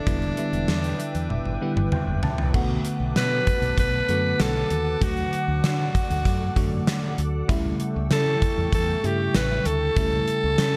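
A raspy, up-front alto saxophone carries the romantic melody in this glossy 1980s-style pop excerpt at 97 BPM, over a bell-like FM electric piano with chorus, an ethereal FM pad, a round fretless bass and a punchy gated drum kit whose fill at 1.3 seconds leads from Em7 into a darkly produced passage moving through Bm7, D and A7.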